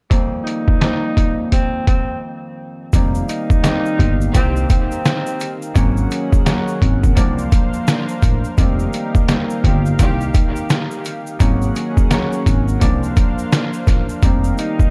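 A swung boom-bap groove at 85 BPM in 4/4 drives this cut from a longer piece, with gritty, pitched-down sampler drums sitting up front: a thumpy kick, a medium-tuned snare and hi-hat. A bright, ringing Celtic harp carries the accompaniment throughout over sus-nine chords on F, Ab and C. From 0.4 seconds, a breathy tenor saxophone plays a distant, intimate jazz melody with subtone, scooped notes and tape echo. After a short break, woody pizzicato upright bass, a detuned sawtooth pad with chorus and a grainy egg shaker in the background all enter at 2.9 seconds. Lush bowed strings with tape echo add brief stabs from the back of the mix, and the whole piece feels confident and warm in a small, dark-sounding room.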